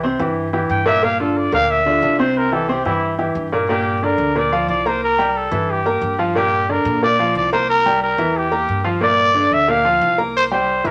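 A moderate studio reverb gives this short salsa cut a room-sized sheen, with the piano and trumpet sitting up front. It's a sunny, danceable latin groove in a straight four-four feel, built on a steady alternation of C7 and Gm7 chords. A clear, intimate, polished grand piano carries the accompaniment from the start, its audible action noise adding a close, present texture, while a pizzicato upright bass on gut strings provides a woody, thumpy foundation set lower in the mix. At 0.7 seconds a growling trumpet enters with the melody, featured as a solo through 3.7 seconds. Its raspy, gritty tone is balanced by a smooth top and light vibrato in a pop style. The trumpet stays forward as the material moves into a second section, and the excerpt is cut from a longer piece.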